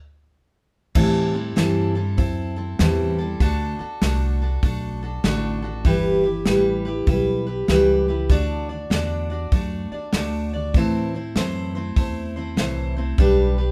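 Honky-tonk and classic country in a sunny, heartfelt mood, this 98 BPM excerpt swings its eighth notes in 4/4. A bright, full-bodied picked steel-string acoustic guitar sits up front from 0.9 s, joined at 1.0 s by a woody, thumpy pizzicato upright bass and an airy, polished drum kit with a punchy kick, medium-tuned snare, hi-hat and crash. Under light reverb, the band moves through Am7, D, Em, D and Am before landing on G.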